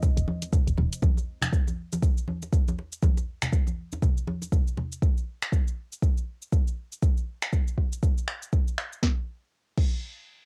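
A driving 120 BPM afro house groove with a 16th-note swing is led by a deep, overdriven electronic kick up front, joined by an afro-pop kit of cabasa, crash, finger snaps, sharp snare and hi-hats, with bright, dry congas playing until 4.9 seconds, while a dark, detuned analog pad with chorus and sidechain pumping holds an Fm/Eb chord in the background and a woody, round FM bass touches an Eb within the first second, all on hypnotic, cassette-hued, home-recorded tape in this short cut from a longer piece.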